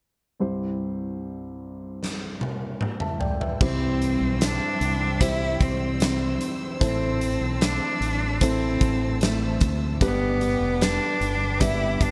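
A biting, intense solo cello carries the melody of this hopeful, tender pop ballad, its bowed line rich in vibrato as it enters at 3.6 seconds alongside a lush string section held in the background, a round fretless bass and a very quiet, thumb-plucked nylon-string guitar playing arpeggios. Before that, a dark, vintage-sounding grand piano opens alone at 0.4 seconds, and a huge arena drum kit with a punchy kick and bright cymbals joins with a fill at 2.0 seconds, its hall ambience lending size. The chords move from C to A minor to G under a studio reverb in this excerpt from a longer piece.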